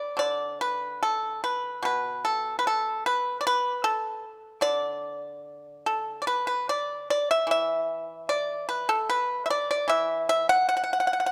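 A solo pipa opens this short cut from a longer traditional Chinese piece, its bright, percussive fingerpicked tone sitting dry and up front as it ranges from B2 to F#5 in the D gong mode, tuned to A4 = 438 Hz. The mood is elegant and serene, moving at a flexible rubato pulse around 74 BPM in 2/4. A new section begins at 6.7 seconds and carries on until the close at 11.3 seconds, all in a light reverb.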